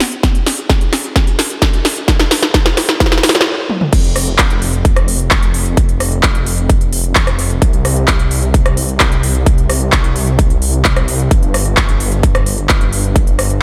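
Festival progressive house with an anthemic, euphoric mood, cut from a longer piece, where a punchy, layered electronic kick and a big-room kit of crisp hats, punchy snare, handclaps, rim clicks, toms and crash cymbal drive a build-up full of drum fills that halts briefly at 3.5 seconds before the drop lands at 3.9 seconds with a thick, menacing detuned saw bass, tube-saturated and pumping under sidechain, all set up front in light reverb.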